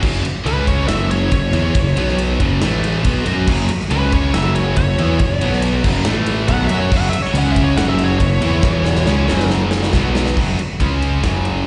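A round, dark fuzz bass sits up front in this driving, menacing hard rock clip in F# minor at 139 BPM, pushed along by a big acoustic drum kit with a punchy kick, bright cymbals and a drum fill from 8.6 seconds. A bright high-gain guitar grinds out the riff alongside a sludgy, overdriven guitar with slapback echo sitting in the background, joined at 3.5 seconds by a double-tracked overdriven guitar. Over them, from 0.5 seconds, a high-gain lead guitar soaked in plate reverb and analog delay solos, all heard as a live gig through the venue's PA in a reverberant hall with a dulled top end.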